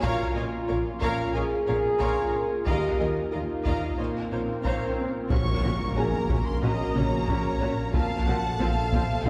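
A steady, straight 4/4 pulse at 91 BPM is driven by heavy-stick taiko drums sitting close but in the background, setting a relentless, tense tone for this hybrid orchestral and electronic film cue in Bb minor. Lush bowed strings fill the harmony: violins carry a smooth second line, violas add focused accompaniment, and cellos and distant double basses anchor the low end, while a mellow, roomy French horn section holds sustained chords. A warbling, lo-fi tape-like pad with chorus, phaser and its own reverb drifts alongside them, and a soft felt-muted upright piano adds a very quiet, intimate texture with audible action noise. A faint electronic swell rises from 4.2 seconds into an impact at 5.3 seconds, where a high violin melody enters and a dark, rumbling detuned saw bass joins on a sustained low Bb. The harmony moves from Bbm through Ebadd9 and Bbmadd9 to Gb/Bb and F/Bb, all heard from further back in a wet scoring-stage space.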